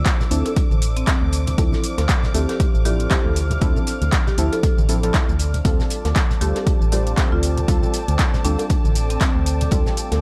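A punchy, overdriven electronic kick sits up front in this moody, hypnotic deep house excerpt. It is joined by an overdriven kit of handclaps, metallic hi-hats and shaker, a very quiet acoustic soul kit with a fat snare, and soft-handed congas and bongos tucked in the background. A hollow, organ-like FM bass and soft, detuned chord stabs with chorus and delay pump under the sidechain, while a sustained sawtooth analog pad and a warbly, lo-fi tape-like pad with phaser hold Dm9 before shifting to F6 at 5.7 seconds, and a woody marimba melody with digital delay and a lush bowed violin section float far back in the small, dark room.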